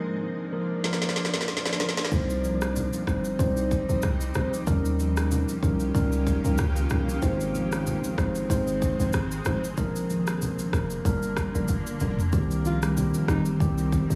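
Opening together at 0.0 seconds, a mellow tine electric piano sits up front with clean, direct chords while a granular cloud pad drifts beneath it, blurred and evolving, with its own built-in reverb lending a bright, detuned haze. This is a smooth, hypnotic afrobeats piece in C minor at 94 BPM, with a gentle swing on the sixteenths, cut from a longer work. The produced afro-pop drum kit arrives at 0.8 seconds with a fill, bringing a deep kick, woody snare, rim click, shaker and toms, all tape-tinged and forward in the mix. At 2.1 seconds a hard-hitting 808-style bass lands with a punchy, heavy sine tone, a fast attack and a decaying tail, joined by very quiet, compressed congas played with soft hands. The harmony moves through Cm, Eb7, Ab, Bb and Gm, and after another drum fill a brief breathy alto saxophone phrase appears at 12.7 seconds, raspy and gritty with vibrato and a digital delay, over a light small-room ambience.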